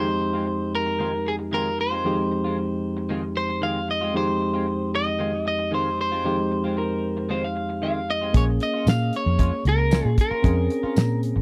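A slightly broken-up electric guitar sings a mournful, smoky melody over a barky, gritty overdriven electric piano and soft, clean chorused guitar stabs in this straight-eighth soul blues fragment, all close and dry in a 1970s-style studio sound. A bright, twangy, lo-fi second guitar through a small old amp adds a brief line from 6.8 seconds. At 8.3 seconds the harmony moves from Fm7 to Bbm7 as a round, foam-muted bass and a damped drum kit with a fat snare, tight kick, hi-hat and tambourine enter up front.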